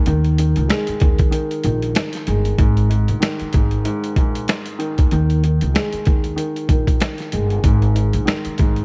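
A dark, mellow upright piano and a woody, pizzicato upright bass open this moody, tough boom-bap hip-hop excerpt, joined at 0.1 seconds by a gritty, pitched-down sampler-style drum kit with a thumpy kick, a medium-tuned snare and hi-hat. The groove sits at 95 BPM in 4/4 with a swung sixteenth-note feel, and a break arrives at 1.3 seconds before the music moves into a new section at 2.6 seconds. The piano stays low in the mix, its smooth, vintage tone filtered and run through cassette tape, while the steel-strung bass and the compressed drums sit up front. The harmony moves through suspended chords, D#sus4 to G#sus2 and back, settling on a bare G#5 near the end. The recording is dry, with a worn, warbling old-tape character and a warbly, drifting pitch.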